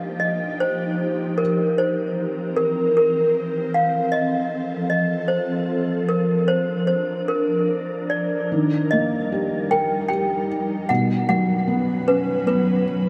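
A rubato 6/8 lilt sways gently through this tender, sleepy children's lullaby, a short excerpt cut from a longer piece. Up front, a clanky, bell-like toy piano carries the melody, its wooden hammers slightly out of tune and softened by a subtle chorus and a diffuse ambient delay. Beneath it, an ethereal, airy pad of detuned sawtooth and triangle layers with a noise layer holds sustained chords, fading in slowly and lingering on long releases through ensemble chorus, built-in reverb and phaser. At 8.5 seconds a felt-muted upright piano joins with intimate, thick-felted accompaniment notes of short sustain. The harmony drifts from Ebadd9 through C7, F and Bb back to Eb before settling on an open Bsus2 at 10.9 seconds. The whole dreamy mix is soaked in a huge, lingering reverb that blurs the parts into a hazy glow.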